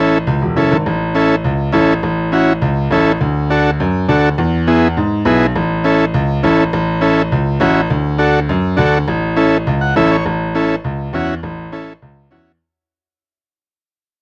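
Cumbia at a brisk 204 BPM in A major, danceable and sunny, with a vintage, buzzy combo organ up front playing the chords over A, D and E while a brilliant grand piano carries the bass line in its low register with long sustain. The dry, close small-room sound has a 1970s studio character. At 9.7 seconds the organ plays a short fill leading into a new section at 10.3 seconds, where this cut from a longer piece fades out.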